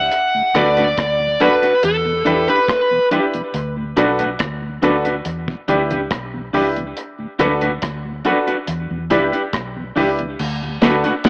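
A dark, overdriven lead guitar opens this laid-back, uplifting roots reggae excerpt, its picked melody up front and trailed by tape echo, while a round, foam-muted fingered bass sets a punchy low line beneath it. The lead drops away at 3.1 seconds and only reappears briefly at 11.3 seconds, leaving the groove to carry the middle. A dry acoustic drum kit with a tight kick, medium-tuned snare, rim clicks, hi-hat and crash fills the space, its hits thrown into dub echo. A mellow tonewheel organ sits in the background, its dark tone shimmering through chorus vibrato and a slow rotary speaker. A slightly broken-up, twangy electric guitar and a brilliant, intimate grand piano, complete with audible action noise, add stabs and accompaniment over a gently alternating D6 and Em7 progression. The whole mix is bathed in moderate spring reverb and filtered to a narrow, AM-radio character.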